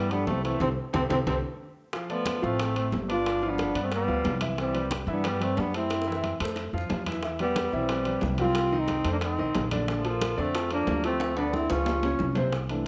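A breathy, close-miked trombone carries the melody over a distant, roomy cor anglais second line in this lively, sophisticated Afro-Cuban jazz excerpt, with an intimate baby grand piano showing audible action noise, a woody, thumpy pizzicato upright bass up front, ringing metal-shell timbales, background congas and tight, high-tuned bongos, all set in a moderate large-studio reverb, with drum fills at 0.6, 5.9 and 11.2 seconds.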